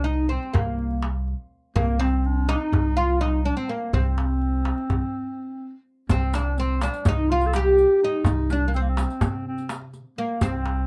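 Turkish makam ensemble music in 9/8, hypnotic and soulful and cut from a longer piece, with a mellow, woody fretless oud carrying the melody up front, a dark, breathy clarinet with light vibrato as the second line, a growly pizzicato upright bass, and a crisp metal-shell darbuka, broken by a stop from 5.0 to 6.1 seconds before a riq with bright jingles joins at 6.1 seconds, all captured with close, detailed microphones and light reverb.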